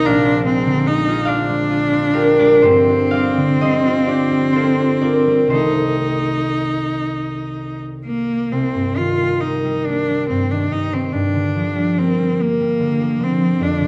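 Classical impressionist duo in a rubato 6/8, wistful and mysterious, cut from a longer piece: a rich, smooth bowed cello with vibrato carries the melody up front over a mellow, ringing fingerpicked concert harp spanning a broad range, both bathed in a wet recital-hall reverb with a dark production, moving through extended chords before a second section begins at 8.5 seconds.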